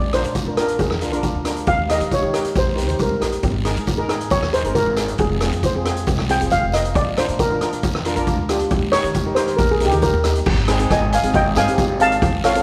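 A mellow lead steel pan, played with soft rubber sticks, carries a sunny, festive calypso solo for the first 10.5 seconds; it sits up front with a boxy small-room tone over a second, softer double-seconds pan that shimmers in the accompaniment. Underneath, a woody, thumpy pizzicato upright bass on gut strings and a street-band drum kit with a boomy kick, hi-hat, rim click, crash cymbal and a rolled-off top drive a straight 4/4 at 136 BPM in Ab major. A raspy, close and dry guiro adds texture, and moderate concert hall reverb surrounds this short cut from a longer piece as the chords move through Bb, Eb, Absus2 and Fm before settling on Ab.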